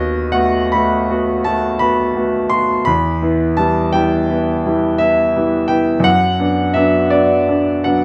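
Melancholic and mournful, this short passage cut from a longer piece is a romantic classical nocturne for solo piano in B minor. It moves slowly at 56 beats per minute, counted in dotted quarters in 9/8, with a flexible rubato feel, and is tuned to A4 = 438 Hz. A concert grand piano plays alone throughout the 8 seconds, ranging from D#2 up to C6, its tone clear and polished with a deep bass, long sustain and an up-front, present placement. The harmony passes from B7 over D# to E minor at 2.9 seconds, then settles on B minor over F# at 6.1 seconds. A moderate recital hall reverb with a 1.6-second decay surrounds the instrument with a sense of space.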